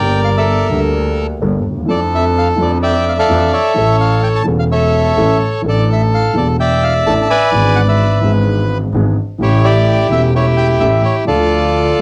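A home cassette recording with light reverb carries this 12-second cut from a longer tango, dramatic and sultry, at 128 BPM in 4/4 with a rubato feel and tuning of A4 = 439 Hz. Up front, a reedy bandoneon with a tape-worn tone sings the melody, while a dark, mellow grand piano with deep bass, smooth short-sustained notes and a vintage cassette color provides the accompaniment. A single bowed double bass, focused and biting with vibrato and a touch of transformer saturation, anchors the low end as the harmony moves from Gmadd9 through A, E7/G# and A7 to land on Dm.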